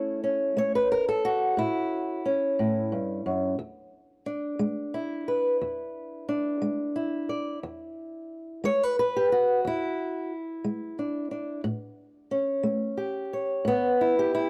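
Acoustic country blues in a swaggering, laid-back mood, this short cut from a longer piece rolls along at 60 beats per minute in a straight 12/8 feel, centered on E mixolydian. A single fingerpicked, ladder-braced acoustic guitar carries the whole 14.5 seconds as the solo voice, ranging from E2 up to D5. Its old strings give a dark, woody, boxy tone, and it sits up front in a dry, close recording with a small room ambience and a 1970s studio character. The harmony opens on A, moves to E7 at 3.6 seconds, and turns to A7 at 11.6 seconds. The guitar is tuned slightly below standard pitch, to A4 = 439 Hz.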